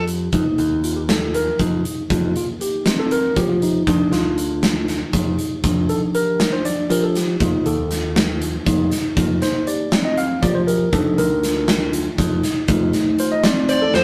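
A bright, clean tine electric piano solos through a combo amp from 0.3 s in this driving, intricate progressive instrumental in 7/8 at 238 BPM (eighths) in F mixolydian, moving over F9sus4, Ebmaj7 and F7 chords. It is backed by an up-front big rock drum kit with a punchy kick and a medium-tuned snare, a direct picked electric bass, and a mellow vibraphone with soft mallets and slow motor vibrato ringing metallic arpeggios in the background. A dark, distorted high-gain lead guitar sounds briefly at the start and returns at 13.7 s. It is captured in a rough rehearsal-room recording with tube saturation and moderate studio reverb, and cut from a longer piece.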